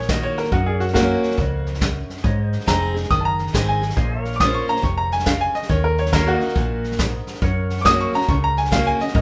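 Honky-tonk and classic country with a dusty, brooding mood, this short excerpt from a longer piece swings along at 139 BPM in 4/4, its chords moving through Ebm, Gb, Ab and Bbmadd9. A clear, woody upright piano carries the melody up front with a short sustain, playing a solo across the whole 9.2 seconds. A picked steel-string acoustic guitar with an auditorium tone fills in the accompaniment, while a hollow-body short-scale electric bass, fingered and amped, gives a dark, round, punchy low end. A vintage brush kit of hi-hat, kick and medium-tuned snare has a punchy kick and a rolled-off top, sounding distant and roomy yet placed up front. In the background, a clean, compressed pedal steel played with fingerpicks and slide holds sustained chords with volume swells, and the whole band sits in a moderate large-studio reverb.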